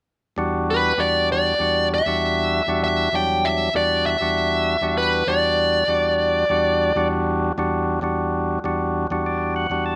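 A moderate echo-chamber reverb gives this brief, straight-feel blues passage a smoky, brooding space, with both parts sitting up front. A full, lightly overdriven percussive tonewheel organ, with third-harmonic percussion and key click through a stationary speaker, accompanies on an Em9 chord from 0.4 seconds, while a dark, smooth, overdriven electric lead guitar plays a picked melody from 0.7 to 7.1 seconds. The organ then closes with a fill at 8.9 seconds.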